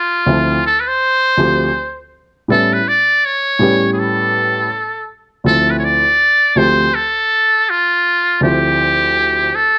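This hip hop excerpt is mellow and nocturnal, moving at 81 BPM in 4/4 with a 62% swing on the sixteenths and sitting in D dorian. A trumpet with a metal mute carries the melody from the first moment, up front with a buzzy, thin tone, soft attacks, scooped notes and vibrato in a vintage jazz style, bathed in plate reverb. An upright piano enters at 0.3 s as accompaniment, sounding woody, worn and slightly detuned, with audible action noise and long sustain that keep it intimate and close. The harmony moves from Dm9 to A7 and back to Dm9, framing the trumpet's line within a modest studio room. The overall production is dusky and warm.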